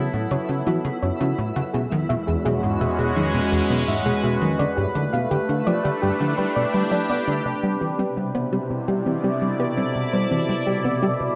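A bright, up-front sawtooth pad with a resonant, evolving filter sweep opens this expansive, cosmic piece of sequencer-driven ambient space music at 84 BPM. Around it sit a punchy, funky analog bass riff with delay, soft, round detuned pluck arpeggios set darkly in the background, and a twinkling granular texture that sparkles with an octave-up shimmer. Electronic shaker and toms with delay play until 7.4 s while the chords move through F#m, E and G7, and the harmony then settles on C major, all bathed in a wet, echo-heavy spring reverb in this cut from a longer piece.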